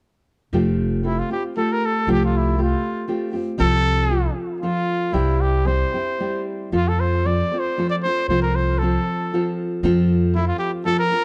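Proud and romantic, this short mariachi passage in F major sways in 3/4 at 116 BPM with a loose, rubato feel, opening at 0.5 seconds on a fingerpicked nylon-string guitar with a full-bodied classical tone and a woody, growly pizzicato upright bass. A clear, classical-style solo trumpet takes the melody from 1.1 seconds, touched with analog delay, while the bass drops out at 10.5 seconds. Guitar, bass and trumpet all sit up front in a dark production with light reverb, moving through Fadd9, F/C, C and back to F.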